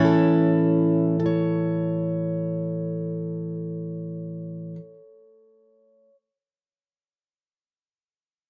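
Warm and uplifting, this brief folk fragment in free time and A major pairs an up-front, fingerpicked plugged-in steel-string acoustic guitar playing accompaniment from 0.0 to 6.1 seconds with a woody, boxy upright piano carrying a high melody in the background with short sustain and a slapback echo until 4.7 seconds, all captured outdoors with little reverb.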